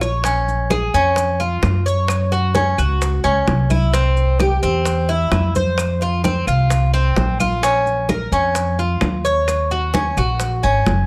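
Close, detailed microphones and light reverb give this danceable, nostalgic excerpt of Cuban son and guajira an intimate clarity, opening on a drum fill as the up-front acoustic tres picks metallic, double-strung arpeggios over a pizzicato upright bass with a woody, steel-string tone. Tight, high-tuned bongos drive the groove alongside grainy, mellow maracas and dry claves, while bright, thin-skinned congas join in the background at 0.3 s; the claves drop out at 10.4 s. The harmony moves from Bbm7 through Gb5, C and F5 to Bbm and Ebm7.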